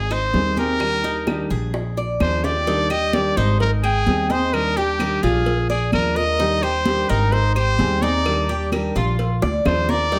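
Trumpet, Cuban tres and upright bass open this danceable, warm excerpt of Cuban son and guajira, a straight 4/4 groove at 129 BPM in Eb major. The bright trumpet carries the solo melody up front with a light vibrato and a pop-style delivery. The bass sits close and present, plucked pizzicato on dark, thumpy gut strings, while the tres picks metallic arpeggios on doubled strings and the fingerpicked nylon-string guitar adds full-bodied classical accompaniment. Congas, round low-tuned bongos with cowbell, and distant woody claves stay in the background, with drum fills at 2.2 and 9.4 seconds. The harmony cycles through Abmaj7, Ebmaj7 and Bb7 under a light reverb.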